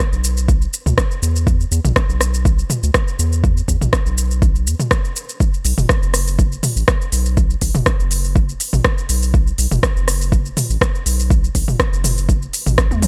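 A layered deep house kit opens this hypnotic, spiritual afro house passage at 122 BPM, with smooth hi-hats, rim clicks, shaker and toms riding lightly swung 16ths. It is joined at 0.1 seconds by a round, nasal analog bass with a filtered pluck and sidechain pumping, moving between F#1 and E2, and at 0.5 seconds by a deep, overdriven electronic kick. The dry, up-front mix runs on to a drum fill at 12.9 seconds.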